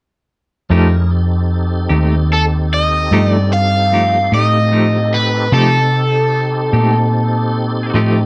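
Set in a light reverb, this gritty, swaggering 12/8 blues opens at 0.7 seconds on an F9 chord, with a dark, round hollow-body bass up front, a bright, clean electric guitar with tremolo providing accompaniment, and a tonewheel organ holding full, lightly overdriven chords through a slow rotary speaker and chorus vibrato, before a cranked stack guitar, overdriven and phased, enters prominently at 2.3 seconds to carry the melody.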